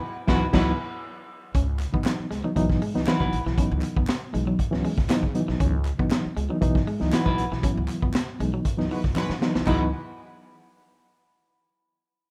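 A rough home-demo mix with small-room ambience frames this funk excerpt, hypnotic and driving at 118 BPM in 4/4 with a straight groove in C# minor, opening on a C#m11 chord. Up front, a crunchy, gritty breakbeat drum kit pairs a punchy kick and high-tuned snare with dark cymbals and a rolled-off top, while a woody, growly pizzicato upright bass holds down the low end. A reedy, worn electric piano, slightly out of tune and pulsing with fast tremolo, plays stabs throughout, and a clean, picked electric guitar with spring reverb adds accompaniment. At 1.5 seconds a twangy, slightly broken-up guitar riff enters in the background, joined shortly after by crisp group handclaps. A clear, roomy horn section with vibrato and tape echo plays a loose second line at the very start and returns near 8.9 seconds, as band accents and a drum fill around 9.2 seconds push toward the next section.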